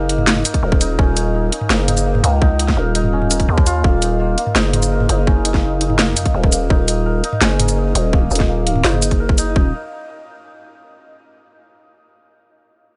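Shimmering, hammered santur arpeggios, softened by a low-pass filter and digital delay, open this tense yet spacious half-time drum and bass cut at 168 BPM in Eb minor alongside a growling, buzzy 808-style bass under a filter sweep, before up-front overdriven drums with a tight electronic kick, cracking snare, bright hats, shaker and toms drive the Ebmadd9 groove in a digital ambience, leaving the ringing santur alone from 9.7 seconds until 11.3 seconds.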